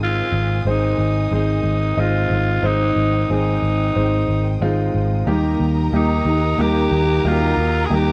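Anthemic and uplifting, this short pop fragment puts a raspy, punchy alto saxophone melody up front over clear, polished baby grand piano, a round, foam-muted electric bass and a lush string section holding sustained chords in the background. At 5.3 seconds, as the harmony moves from Ab to Eb, a dark violin section adds a second line with vibrato and portamento, while a fingerpicked steel-string acoustic guitar plays a riff further back. The sound is a dry, close 1970s-style studio recording touched with light reverb.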